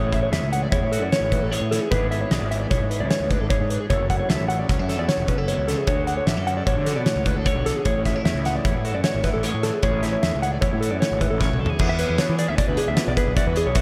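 A bright, playful slice of math rock and midwest emo, cut from a longer piece, moving at 152 BPM in an odd 5/4 metre with a straight feel in A major. A clean, fingered mellow electric guitar sits up front spinning high arpeggios, its dark, compressed tone bathed in spring reverb, while a twangy, scooped electric guitar plays accompaniment underneath with a subtle chorus shimmer. A fuzz picked electric bass adds a punchy, overdriven growl from the low end, and a loose indie drum kit enters at 0.1 seconds with a fat snare, punchy kick, dark cymbals, toms and hi-hat in a pumping studio room. The harmony drifts through jazzy chords like Amaj7, F#m7 and Dmaj7 before a drum fill at 11.4 seconds tips the music into a new section at 11.8 seconds built on E7. Over the whole mix hangs a huge ambient reverb that soaks everything into a dreamy haze.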